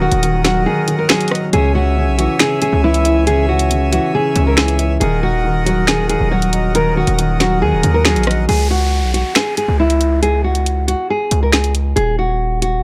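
Tense and dark, this half-time drill excerpt at 138 BPM sets a bright, fingerpicked nylon-string guitar melody over a saturated, heavy 808-style bass and an overdriven drum kit of woody snare, bright hats, rim clicks and finger snaps, with a mellow, vintage grand piano and reedy accordion chords holding the opening until 8.5 seconds, when an electronic downlifter enters over Db5 harmony in a small room.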